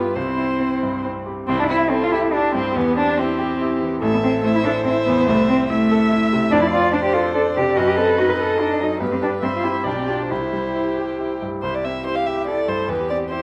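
Moving briskly in 3/4 at 142 BPM with a rubato pulse, this short stretch from a quick classical-period movement for piano quartet in C major feels stormy and restless. A single muted violin carries the melody con sordino, its veiled, dark tone softened by vibrato and gentle attacks, while a bright grand piano sits up front with a brilliant, open sound and short sustain as accompaniment. A muted viola adds close, shadowy accompaniment with light vibrato, and a muted cello, entering at 0.1 seconds, sings a second line with portamento, sounding both distant and up front and standing out as the most prominent voice. The harmony moves from C through A minor and D minor seventh to a diminished chord on F sharp, then settles through G and G seventh back to C at 10.3 seconds. Close, detailed microphones capture the players inside a moderate recital hall reverb that lingers about 1.3 seconds, and the passage breaks off at 13.4 seconds as part of a longer piece.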